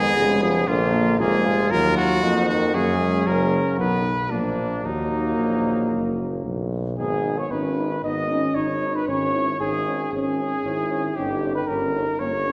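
A brass quintet opens together on a grave, heroic passage in classical style, moving at 115 BPM in a straight 4/4 in E-flat minor, tuned slightly low to A4 = 435 Hz. Up front, a mellow trumpet carries the melody with light vibrato and a soft attack, while a close-miked bass trombone anchors the bottom with a warm tone. Behind them, a punchy yet distant flugelhorn sings a second line, a dark French horn fills in the accompaniment, and a trombone with light vibrato and a vintage, band-limited colour rounds out the inner harmony. The harmony moves through chords such as Fm7b5, Bb7 and Ebm before shifting to G-sharp minor at 7.0 seconds, passing through C#madd9/G# and closing on D#7/G as the fragment breaks off at 12.5 seconds. A wet, reverberant hall sound surrounds the ensemble, lending the short passage a grave, heroic weight.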